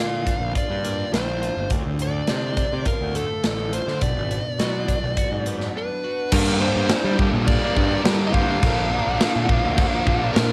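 A straight 4/4 pulse at 104 BPM drives this brooding, dark quiet-loud alternative rock excerpt in G minor, where a dark, compressed fuzz lead guitar carries the melody over a warm, overdriven picked bass with tube saturation and a punchy, up-front acoustic drum kit with bright cymbals entering at 0.3 seconds, while a twangy, clean twelve-string electric guitar plays phaser-and-delay arpeggios in the background through a break at 5.7 seconds until 6.3 seconds, when a double-tracked, up-front fuzz guitar riff joins in, all captured as a cassette home recording in a small room.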